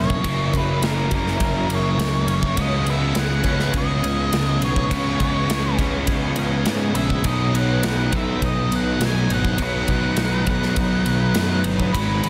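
Wistful and dreamy, this short cut from a longer piece is shoegaze-tinged dream pop rock at 102 BPM in a straight 4/4, set in B major and moving from F#7 to C#7sus4 at 2.6 seconds and settling on Bmaj7 at 7.2 seconds. An octave-fuzz lead guitar carries the melody in a dark, distorted voice trailed by digital delay, while a vintage phased string machine swirls behind it with slow-attack, sawtooth chords, bright and evolving under ensemble chorus. Low in the arrangement, a thick fuzz guitar and a biting overdriven guitar play riffs, the first murky with chorus and the second warm and washed in reverse reverb, and a twangy, compressed clean guitar picks very quiet arpeggios. A punchy, fuzz-laden picked bass anchors the low end with overdrive. A big, polished acoustic drum kit enters at 0.1 seconds, up front with an airy room sound, bright ride cymbal, medium-tuned snare and a punchy kick, all inside a small room ambience and a dense, heavily limited modern master.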